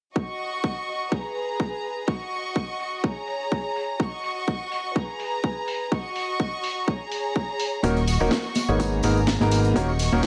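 A dark, intimate violin section holds smooth sustained chords with light vibrato and a sidechain pump, riding over a punchy, tape-warm electronic kick and a house kit with cracking snare in this energetic, soulful piano house excerpt with a gentle swing. At 7.8 seconds a clear, woody upright piano riff with tape echo arrives alongside a fat, saturated analog bass that pumps in time, while a big-room rock kit and soft-handed congas and tambourine sit in the background. Light reverb and studio ambience frame the minor-key chord cycle.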